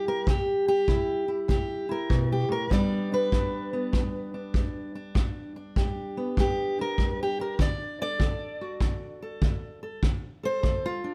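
A fingerpicked steel-string acoustic guitar opens this rollicking, gritty country blues excerpt, carrying the melody up front with an auditorium-sized body and audible finger squeak as it moves through C, G and D over a swung 4/4 feel. A tight, roomy kick drum with brushes joins at 0.3 seconds. Light reverb gives the sense of a band playing live in one room.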